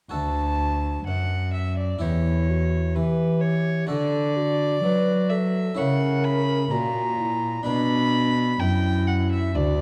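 A steady, straight 4/4 pulse at 64 BPM carries this radiant, flowing baroque-style sonata movement in D major, cut from a longer piece. From 0.1 s, a single bowed violin sings the melody up front with a reedy gut-string tone and light vibrato. A close, bowed cello anchors the bass with a rich period-style voice, sitting louder than the other parts. A close-miked harpsichord supplies the accompaniment, dry, full and round in the French style. At 2.0 s, a distant wooden baroque flute enters with a second line, pure and hollow, with a crisp attack and vibrato. The harmony moves from D through diminished chords toward B minor, all set in a wet recital hall reverb within a dark, warm production.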